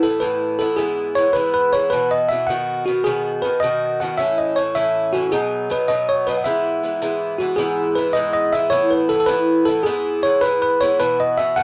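A rollicking 6/8 Celtic jig in a cheerful folk mood sets a bell-like, bright tine electric piano up front on the melody, its clean, direct tone given a slapback echo, over a picked acoustic Irish bouzouki whose double strings ring metallic in accompaniment, the phrase starting again at 7.6 s in this dry, close, 1970s-style studio fragment cut from a longer piece.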